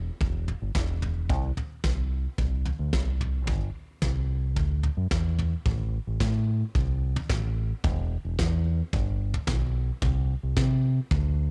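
Indie folk with a building arrangement, nostalgic and uplifting at 110 BPM in a straight 4/4. A dark, round fingered electric bass sits up front from the first second, joined at 0.2 s by a brushed acoustic kit with a fat snare, a punchy kick and toms, given a cassette-tape coloring in a small room. The dry home cassette recording shifts into a new section at 5.7 s before this fragment of a longer piece cuts off at 11.5 s.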